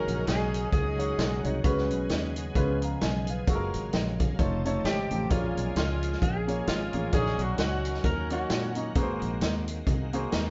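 Soulful and hopeful, this uptempo gospel clip swings in 4/4 as a twangy, clean lap steel guitar and a mellow, distant horn section carry the melody at the start and again from 4.9 seconds, over a warm grand piano with deep bass, a bright, lightly overdriven tonewheel organ holding background chords through slow rotary speaker and chorus vibrato, a round, punchy fingered electric bass, and a roomy big-band drum kit with a boomy kick, all played live together in one room with moderate studio reverb and a soft, dulled top end.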